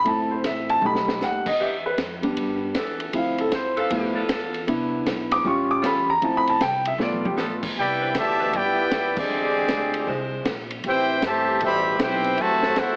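Energetic and brassy, this big band swing piece in C major moves at 156 BPM. It opens with an up-front concert grand piano solo over a woody, thumpy pizzicato upright bass and an open jazz kit with dark cymbals, a high-tuned snare and a boomy kick, while a smooth-topped saxophone section with vibrato holds sustained chords from 1.6 seconds. At 7.8 seconds a clear, tight trumpet section takes the melody alongside a bright, loose trombone section on a second line, with a band accent landing at 9.1 seconds, all set in a large studio reverb yet squeezed into a heavily compressed AM radio sound.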